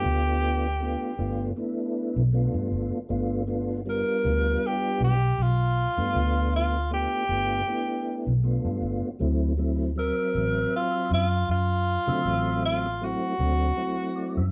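Swaggering and rollicking, this straight-eighth soul blues excerpt at 79 BPM in G mixolydian pairs a mellow, vintage tenor saxophone carrying the jazz-style melody with a round, clean tonewheel organ turning through a slow rotary speaker and chorus vibrato, all over a dark, foam-muted fingered electric bass, with the band playing live in one room under moderate studio reverb as G7 moves to D7 at 9.2 seconds and the organ adds a brief fill at 13.8 seconds.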